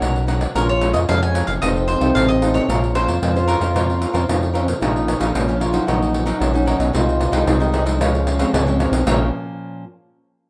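A straight 4/4 samba-and-choro groove at 113 BPM in Bb minor is set by a jingly, distant pandeiro and a glossy, up-front chorused synth bass, with a fingerpicked nylon-string guitar and a crisp, picked cavaquinho sitting in the background. A round, double-strung mandolin carries the melody until 4.5 s, while a breathy, whispered trombone with light vibrato and slapback echo plays a second line until 9.3 s, and the guitar rings on alone to 9.8 s. The mood is nostalgic and bittersweet, with plate reverb on the mandolin, cavaquinho, guitar and trombone, a rough home-demo sound, and chords moving from Gb and Bbm7 through F7 to Dbmaj7 before returning to Bbm at 9.1 s in this cut from a longer piece.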